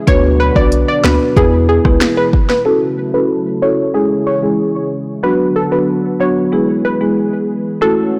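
Dancehall with a hypnotic, sultry mood, heard in a short cut from a longer piece in straight 4/4. An electronic afro-pop drum kit sits up front with a deep kick, a sharp snare treated with soft clipping, smooth hi-hats, finger snaps and rim clicks. A boomy, sine-toned 808-style bass with fast-attack, decaying notes anchors the low end until it drops away at 2.0 s, and the drums stop at 2.6 s. Throughout, a woody marimba played with medium mallets on rosewood bars carries the accompaniment up front under a low-pass filter, and a smooth, detuned sawtooth pad holds long, soft-attack chords with chorus, sidechain pumping and a low-pass filter. A glassy, crystalline wavetable pluck leads the melody with detuned, evolving tones and a noise layer, treated with chorus, low-pass filtering and digital delay. From 2.7 s a filter sweep runs through the second section as the chords move from F#m7 through C#m and Bm/D to E, all set in light reverb and digital ambience within a blown-out, overdriven recording.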